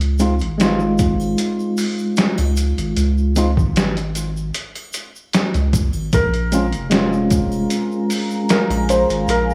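A round, deep analog bass and a muffled, compressed sampler-style drum kit with a thumpy kick and overdriven grit open this dark, hypnotic trip hop excerpt at 76 BPM, with tube shaker and triangle sitting quietly in the background. A worn, slightly out-of-tune tine electric piano joins almost at once with harmonic tremolo and tape echo, moving from Dbmaj7 to Bbm7 as a soft, felt-muted upright piano takes the melody at 6.1 seconds. At 7.5 seconds a moody sawtooth pad, detuned with chorus and its own reverb, adds sustained chords beneath a light digital ambience.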